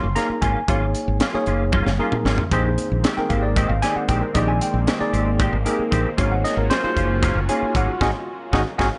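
A worn, slightly out-of-tune tine electric piano with light overdrive opens this bright, slick electric jazz fusion piece in 7/8, alongside clean, compressed stabs from a hollow-body electric guitar with ensemble chorus and a round, dark fretless bass, as a crisp, gritty drum kit with a high-tuned snare and tight kick joins at 0.2 seconds and plays a fill at 1.7 seconds, while a swirling, detuned vintage analog pad with phaser and chorus enters in the background at 2.8 seconds before a band accent closes the cut in a small, lightly reverberant room.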